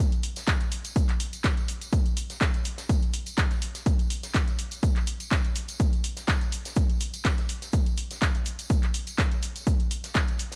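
An up-front, overdriven electronic kick drives this feel-good, euphoric house cut at 124 BPM with a light 16th-note swing, alongside a dry analog drum machine supplying handclaps, hi-hat and shaker, while a background tambourine and a dark, smooth shaker-and-snare part with a medium-tuned snare add texture, all set in a small room with a gritty cassette-tape character.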